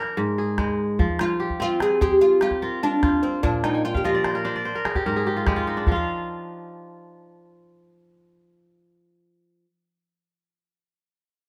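A plectrum-plucked oud and a bright, fingerpicked kora open this hypnotic, flowing passage of West African traditional string music, set in a straight 12/8 at 98 BPM in F dorian, with a small calabash joining almost at once. The woody, fretless, double-stringed oud carries a deep melody up front until 4.6 seconds, while the crisp, ringing kora spins arpeggios across a broad range and breaks into a fill from 3.6 seconds. After the calabash stops at 6.1 seconds, the kora carries on alone in a live band sound with light reverb, cut from a longer piece.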